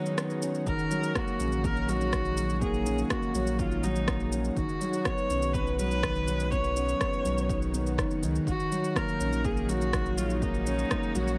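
Piano and strings electronica in F# major at 123 BPM, tender and luminous, where a felt-muted upright piano plays a soft, dark riff and a bowed viola with vibrato carries a smooth melody up front, both in shimmer reverb, over a lush, detuned unison pad of sustained chords with chorus and sidechain pumping in the background, while an electronic shaker and rim click tick in from 0.1 s and a punchy electronic kick drum and round sine sub bass with sidechain pumping join at 0.7 s over chords moving from Badd9 to F#6.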